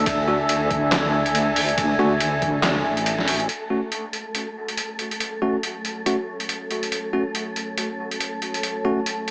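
Gritty, pitched-down trip hop sampler-style drums with handclaps, hi-hat, ride cymbal and a medium-tuned snare sit up front in this dark, meditative deep dubstep excerpt at 140 BPM, half-time with a swung feel in F# minor, joined by a thumpy kick tucked in the background until 2.5 seconds, a deep, soft wobble bass with chorus that carries the opening drop and stops at 3.5 seconds, a moody, detuned analog pad with chorus, an airy, wind-like tuned noise texture, and bell-like tine electric piano stabs through a low-pass filter and dub echo, set in a lush hall reverb with a small-speaker tone.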